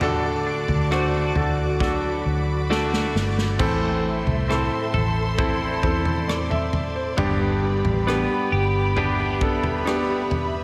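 The bright concert grand piano sits up front in this emotional pop ballad excerpt, its polished, brilliant tone carrying the accompaniment with a deep bass and a slapback echo. At a slow 67 BPM in a straight 4/4, the harmony moves from D to Am at 3.6 seconds and then to G at 7.2 seconds, giving the passage a heartfelt, unhurried feel. A clean, twangy twelve-string electric guitar picks compressed arpeggios through a digital delay, while a clear studio string section holds smooth, bowed chords with vibrato high above. Underneath, a vintage foam-muted fingered electric bass adds a dark, round low end, and a natural country drum kit with a punchy kick and medium-tuned snare plays a fill from 1.8 to 3.6 seconds. The whole mix is bathed in a lush hall reverb that gives it a big arena sound.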